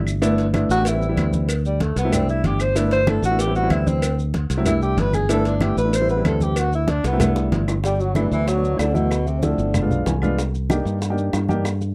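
A mellow tenor saxophone with slapback echo solos up front over a dark baby grand piano with audible action noise and a growly, punchy fingered electric bass, while soft-handed congas, tight cowbell and bongos, woody claves and grainy maracas fill out this lively, danceable Afro-Cuban jazz excerpt; a breathy, whispered trombone joins as a second line at 7.8 s, and the piano adds a fill at 9.7 s, all in a dry, close 1970s-style studio sound.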